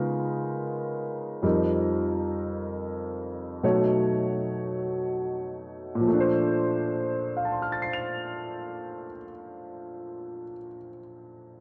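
Swung eighth notes in 4/4 move at an unhurried ballad pace, slowing through the first 6.1 seconds of this tender, intimate jazz fragment cut from a longer piece. A lone grand piano, warm and up front with long sustain and a cassette-tape coloring, ranges from low bass to high treble over lush extended chords such as Db13 and Bbmaj7. A wet spring reverb and the close feel of a home cassette recording give the solo a hazy, private glow.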